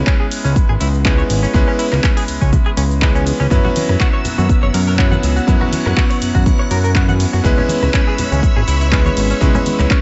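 Nu-disco at 122 BPM in C# minor, groovy and sleek, with a lightly swung 16th feel in this short cut from a longer piece. A punchy electronic kick sits up front with a house kit of handclaps, hi-hat, rim click and shaker in small room ambience, while a fat, detuned sawtooth analog bass with a saturated filter pluck anchors the low end, and a bright, cutting electric grand piano with a clangy bass register comps through tape echo. A twangy, direct clean guitar riff carries lush chorus, 12-bit sampler grit and tape echo, and at 3.5 seconds a full-bodied string machine enters with slow-attack sustained chords and sidechain pumping, joined at 3.6 seconds by ringing, close congas in the background, as the harmony moves from C#m7 to F#7sus4 and back.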